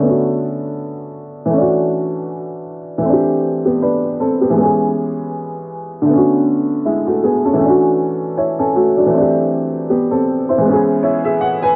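A woody, boxy upright piano plays alone and up front from 0.0 to 11.8 s, its short-sustain chords cycling through Bm7, Dmaj7, C6 and C#m7 in B dorian. This reflective, nostalgic hip hop excerpt moves at 79 BPM with a swung sixteenth-note feel. The piano is dulled by a low-pass filter and cassette tape coloring, with a filter sweep running through the whole passage, all set in a damp, close booth ambience with vinyl crackle and a homemade cassette grain.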